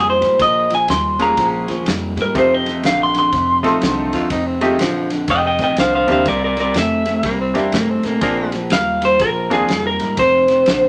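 Two slightly broken-up electric guitars through a small old amp open this rollicking, swaggering electric blues shuffle at 123 BPM in F mixolydian. One plays a low riff while the other, lo-fi and up front, carries the melody over woody, thumpy pizzicato upright bass and a tight soul drum kit with a fat snare, dark ride cymbal, kick and a pumping room sound. A bright, slightly detuned upright piano with audible action noise adds accompaniment from 1.2 seconds, and a raspy, growling tenor saxophone with vibrato plays a second line from 4.1 to 8.6 seconds as the chords move through Bbm7, F9, C9 and Bb9, all set in moderate studio reverb.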